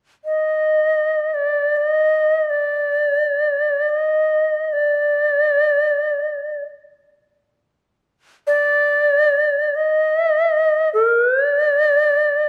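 A bright, reedy shakuhachi plays alone in free time from 0.2 to 12.5 seconds, its airy, end-blown bamboo tone sitting up front with vibrato and tongued notes between D5 and Eb5, giving this calm, austere fragment of Japanese traditional chamber music a focused voice within a recital hall's moderate reverb and a dark production.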